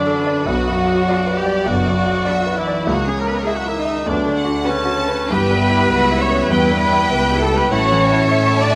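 A clear, present grand piano carries the melody at the front of this lush, lyrical romantic movement for piano and orchestra, moving with rubato at 100 BPM in 4/4 through a B minor progression that settles on A. A focused violin section also carries the melody while a darker, soft-edged violin section, a very quiet flute ensemble and a background cor anglais weave second lines, over a distant viola section, mellow horn chords, dark trumpet stabs, a lush cello section and a smooth double bass section, with very quiet trombone chords entering at 0.5 seconds. Close, detailed microphones capture the strings' vibrato inside a moderate scoring-stage reverb in this short 8.8-second excerpt cut from a longer piece.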